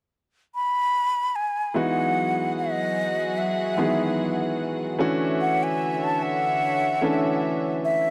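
A dry, gritty hardware recording with a light touch of small-room reverb frames this short, tender, dreamy R&B fragment cut from a longer piece, set in a gently swung 4/4. A breathy concert flute opens alone at 0.5 s, up front, carrying the melody with vibrato, tongued notes, lifted highs and an analog delay trailing its phrases. At 1.7 s a clear, natural grand piano enters as up-front accompaniment on an Emaj9 chord, and a studio string section follows moments later with bowed, sustained chords. The strings have a gut-string, period-style ensemble tone, reedy yet smooth at the top, and sit softly beneath the flute and piano. The harmony shifts to Dmaj9 at 5.0 s, carrying the tender, dreamy mood until the fragment breaks off.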